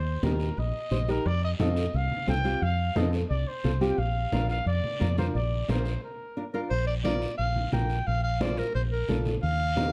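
Cumbia with a sunny, festive Latin lilt, this short fragment of a longer piece moves in a straight four-beat feel over a simple Eb to F7 to Bb progression. A punchy, roomy trumpet takes the solo from the start, playing pop-style lines with vibrato that sound set back at a distance, until a brief break arrives near 6.0 seconds. At 6.5 seconds a clear, jazz-inflected clarinet steps up front with light vibrato and scooped notes to carry the melody. Underneath, a fingered electric bass sits direct and amped at the front of the mix with a foam-muted thump, while a woody, fingerpicked nylon-string guitar on old strings supplies classical-flavored accompaniment. Low-tuned congas with a thick skin and soft hands sit in the background of a large room, and a raspy, saturated guiro adds a faint scratch beneath them. Light reverb and a dark, warm production give the recording a cozy glow.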